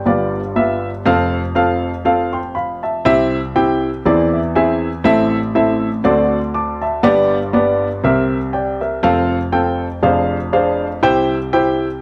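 Reverent and uplifting, this gospel excerpt features a solo baby grand piano with a gently swung feel. Its intimate, up-front tone carries audible action noise and a short, natural sustain across a span from deep bass to bright treble, set in a wet echo-chamber reverb. The harmony moves through dominant-seventh turns, with a brief piano fill at 4.0 seconds and an Fm6 chord at 10.0 seconds that leans back home to C.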